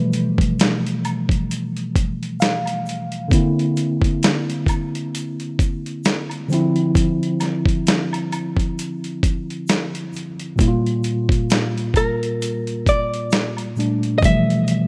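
A hollow-body jazz guitar and a mellow tine electric piano open this nostalgic, melancholic lo-fi hip hop fragment together at 0.0 seconds on a G13 chord. The beat moves at a slow 66 BPM in 4/4 with a light swing on the sixteenths. The guitar's dark, clean, picked melody carries a tape echo, drops out at 2.8 seconds as the electric piano plays a short fill, and returns at 12.0 seconds. The up-front piano holds the accompaniment throughout with a soft cassette-tape colour. The harmony drifts from C9 to Dm9 and Gm9 before settling back on G13. Underneath, a dusty, sampler-style drum kit sits close and gritty, with a thumpy, overdriven kick, a medium-tuned snare and hi-hat that sound re-recorded in a small room, while a saturated tube shaker and woodblock sit far back in the mix. The overall sound is a rough home demo with light reverb and a dull, rolled-off top end, cut from a longer piece.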